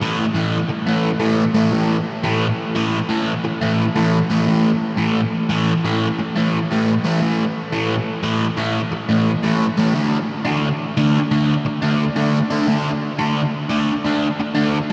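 The recording is drenched in a huge ambient reverb with a 7.8-second tail, giving this short cut from a longer rock piece a dreamy, hazy, trippy atmosphere. A single electric fuzz guitar carries the whole 14.9 seconds alone, sitting up front in the mix with a dark, compressed tone that is double-tracked and treated with distortion, phaser and delay. The picked guitar moves between A2 and D4 at a straight 88 BPM in 4/4, with the tuning set to A4 = 444 Hz. The harmony rests on A5 before shifting to D5 at 9.9 seconds.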